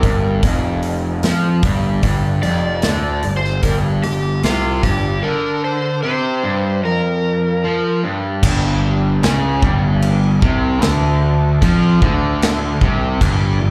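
Heavy and gritty, this blues rock and southern rock power-trio fragment, heard live through a club PA with light reverb, sets a warm, overdriven slide guitar melody played with fingerpicks over the first 8.0 seconds against an up-front, double-tracked semi-hollow guitar riff with hollow-body bite and slapback echo, a growly fuzz-soaked picked bass, and a big acoustic rock kit with punchy kick, medium-tuned snare, hi-hat and bright crash cymbal, before the harmony settles onto a power chord at 8.4 seconds.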